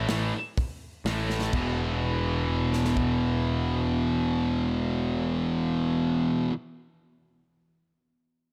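Heavy and relentless, this fragment of a straight-feel heavy metal track drives at 125 BPM in 4/4. Two picked electric guitars riff low: one bright, high-gain and up front, the other sludgy and overdriven, over a growly, fuzz-laden picked bass that is also pushed forward. A polished, airy studio drum kit with a punchy kick, medium-tuned snare, crash and hi-hat plays a fill at 1.3 seconds before the riff settles on E5 at 1.5 seconds, and the drums drop out at 3.1 seconds while guitars and bass grind on in a dark production with light studio reverb.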